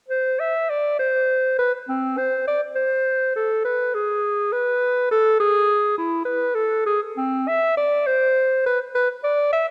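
A lone clarinet opens the recording at 0.1 seconds, clear and punchy in tone and placed up front, playing a baroque-style fantasia in a flowing, solemn mood. It is the only voice throughout, moving through a range from C4 to E5 in 12/8 metre, shaped with a free, rubato feel in a classical manner. A moderate reverb, like that of a large scoring stage, gives the instrument a sense of space. The sound carries the character of worn old cassette tape, with a warbling pitch drift that lends the performance a faded, aged quality. The passage is cut from a longer piece and ends at 9.7 seconds.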